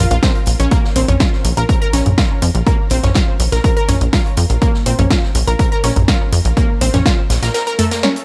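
An up-front, punchy plucky analog bass of sawtooth and square wave with a fast-attack filter pluck pumps on Bb minor beneath a lush, detuned unison pluck playing arpeggios with dub echo, while an overdriven electronic kick, a tape-warm house drum kit with a punchy snare, toms and warm hats, and a very quiet vintage drum kit drive this dark, hypnotic melodic techno excerpt at 123 BPM.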